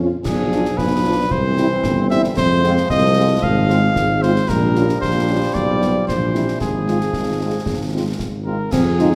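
In a straight, martial two-step, this stern minor-key wind band march sets a punchy, up-front tuba under warm, softly vibrato-tinged trombone chords and a very quiet, dark French horn section. A mellow, close-miked solo cornet carries the melody from 0.3 seconds, joined by a close, dry concert snare, bass drum and clash cymbals with a somber cymbal tone. A smooth euphonium line slips in only at 8.7 seconds, just before this cut-off fragment ends, all set in a reverberant concert hall.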